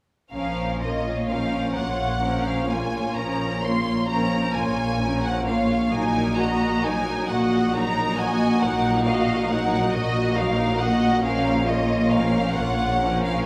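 Classical music for string orchestra, this slow romantic movement in 12/8 unfolds with a yearning, melancholic mood and flexible rubato phrasing. A lush first violin section carries the melody up front, its bowed tone smooth and even with vibrato, while a second violin section sings a warm inner line beneath it with a smooth top. The violas, rich but more distant, supply a smooth accompaniment in the middle register. Underneath, cellos sustain a low Bb in the background with expressive vibrato, alongside a double bass section whose rich, expressive tone with vibrato anchors the harmony. The harmony moves from Bb minor to Eb minor over a Bb pedal at 5.9 seconds and returns home at 11.2 seconds, all bathed in the reverberant glow of a church or concert hall in this fragment cut from a longer piece.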